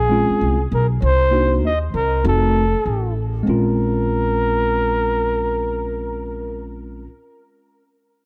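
A dry, close 1970s-style studio sound frames this smoky, mellow jazz-hop excerpt, where a breathy, whispered flugelhorn with vibrato and tape echo carries the intimate melody up front, a woody, thumpy pizzicato upright bass sits close beneath it, and a worn, slightly out-of-tune tine electric piano supplies the accompaniment until the flugelhorn stops at 6.7 seconds and the bass and piano ring on to 7.1 seconds.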